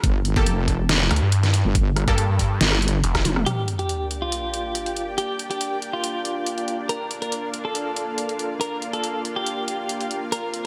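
Heavy wobble dubstep in G minor at 140 BPM with a half-time feel, this aggressive excerpt opens on a drop where a wobbling, saturated bass, a growling distorted saw bass from 1.1 s, a knocking electronic kick and bright, punchy orchestra-hit-like synth stabs with reverb and delay pound over a deep-snared dubstep kit, then after a drum fill and band accent an electronic sub drop lands at 3.5 s as a clean electric guitar melody with tremolo and delay and a lush supersaw pad with sidechain pumping carry on over the drums through Gm and Bb chords.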